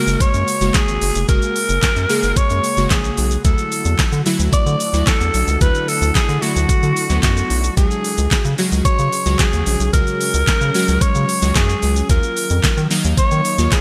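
A straight 4/4 dance-pop groove drives this short, upbeat and carefree passage, set by an electronic, layered pop drum kit with a knocking kick, fat snare, crisp hats, handclaps and shaker, all sitting up front under gated reverb. A round, deep analog bass with a fast attack pumps against the kick, and a very quiet, grainy tube shaker adds a faint acoustic texture from a live room. Glassy digital keys with a noise layer, filter sweep and chorus carry the accompaniment, while an ethereal FM pad, entering at 0.4 seconds, holds mellow sustained chords in the background with ensemble chorus and its own reverb, both also pumping to the beat. Over this, a raspy, growling alto saxophone takes the lead up front, clear yet gritty with vibrato and a touch of delay, giving the piece a vintage pop-solo character. The harmony moves from F#add9 through Dadd9 and C#sus4 to D#madd9, all wrapped in a bright 1980s-style digital production with light reverb.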